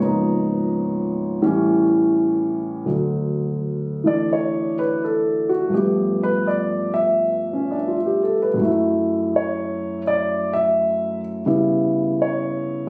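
A swinging 4/4 feel carries this brief solo jazz excerpt, where a dark, mellow grand piano sits up front with audible action noise in an intimate small room, moving through rich chords like C#13, G9 and F#m7 in a sophisticated mood, its solo passage beginning at 2.8 seconds, all captured with the muffled, vintage character of a phone recording.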